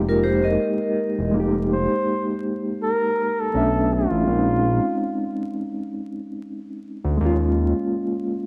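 Hissy cassette tone, vinyl crackle and a moderate spring reverb give this short lo-fi hip hop clip, cut from a longer piece, a hazy, melancholic air. It moves at 82 BPM in 4/4 with a gentle swing on the 16ths, set in F minor, with the harmony drifting from Fm11 through Bm11 and Bbm11 to an Eb9sus4. A reedy, clean electric piano carries the accompaniment throughout, its fast tremolo softened by a low-pass filter, while a fat, detuned, saturated sawtooth bass holds the low end with sustained, fast-attack notes. At the very start a bright, metallic vibraphone played with medium hard mallets rings briefly with a slow motor vibrato, filtered and echoed by an analog delay, before falling away at 1.3 seconds. From 1.7 seconds a breathy, mellow flugelhorn takes the melody in a jazz style, with scooped notes, light vibrato and a smooth top, until 5.4 seconds.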